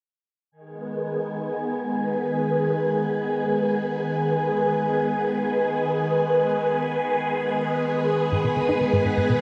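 A swirling, vintage string machine holds sustained, ensemble-chorused and phased chords up front in this hypnotic, cosmic ambient piece, joined at 1.0 s by an airy, breathy wind-like tuned noise texture and, from 8.3 s, a hollow, bouncy square pluck riff with chorus and delay, the whole cut from a longer piece and steeped in a huge, wet reverb.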